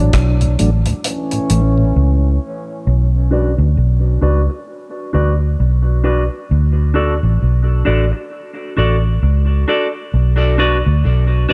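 A slow, swung 16th-note feel at 66 BPM sets up this heavy, deep dub reggae cut in B minor, which opens on a break: a tight, rolled-off reggae drum kit, a punchy dark trombone section with light vibrato carrying a tape-echoed second line, and a flute-like tonewheel organ with key click and slow rotary speaker sitting in the background. The round, foam-muted fingered bass stays up front throughout. After the horns drop out at 2.4 s, a clean, picked electric guitar enters at 3.3 s, low-pass filtered, tape-echoed and swept by a filter over chords shifting between B minor and D, all within an echo-heavy mix touched by light studio reverb.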